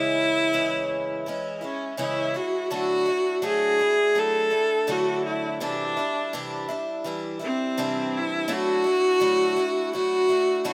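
A moderate plate reverb gives this short rock excerpt a lingering glow, with a rich viola set close and up front above a quieter picked twelve-string acoustic guitar. At 83 BPM in a straight 4/4, the mood is jangly and hopeful. The single bowed viola carries the melody from C4 to A4 with a smooth, even tone and vibrato, and a tape echo trails its lines. Beneath it, the twelve-string supplies accompaniment from C3 to E4, its bright, boxy archtop sound shimmering with octave-doubled strings, and a finger squeak slips through. Both parts play throughout, moving from C#m into a section at 2.7 seconds that shifts among Dadd9 and Cadd9 chords.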